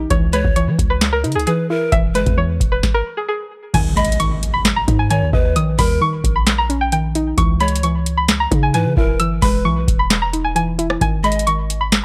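Dry and gritty, this eerie, dark half-time hip hop and trap cut rides an up-front, booming analog drum machine with deep kick, crisp snare, handclaps, rim clicks, metallic hi-hats and crash cymbal, beneath a boomy, sine-based 808-style bass, a twangy, nasal, string-like resonator pluck melody with chorus, a soft, round, gentle pluck accompaniment, and a breathy, bright pan pipe second line with tape echo, while a stop at 2.8 seconds gives way to an electronic impact in the background from 3.7 to 5.6 seconds.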